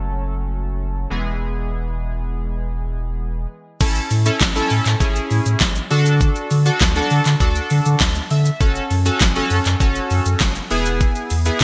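Dance-pop at 100 BPM in A major, euphoric and upbeat, with a bright 1980s-style digital sheen and light reverb, cut from a longer piece. Glossy, chorused retro synth keys and a round, sine-like sub bass both pump under sidechain from the start, the keys carrying a filter sweep over the F#m and E chords until the drop at 3.8 seconds brings in a layered pop drum kit with a knocking kick, fat gated snare, metallic hats, handclaps, shaker and crash. The synth keys add a fill at 7.7 seconds as the chords move through A, D, F#m and E.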